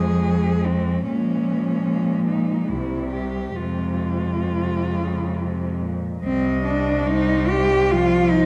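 Dark, reverberant recital-hall sound frames this melancholic, solemn classical fragment for four bowed cellos in F minor, moving in a rubato 3/4 at roughly 66-76 BPM, where three expressive, warm cellos carry the melody, an up-front second line and a more distant accompaniment with vibrato and portamento, above a clear, smooth and even cello bass, before the music shifts to a new section at 6.2 seconds.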